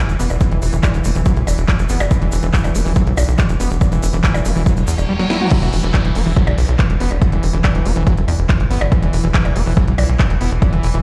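Psychedelic trance at 141 BPM with an alien, driving mood: a punchy electronic kick and a tight, sawtooth sequencer bass sit up front beneath a squelchy, gritty acid bass riff with distortion and delay, a techno kit with cracking snare and smooth hats, a grainy shaker until 5.1 seconds, and a pulsing, chorused gated texture in the background, as a filter sweep on the acid bass, a reverse cymbal, and a drum fill lead into the drop at 5.5 seconds, with the reverse cymbal and downlifter layer running on until 8.9 seconds, all in a large, reverberant digital space.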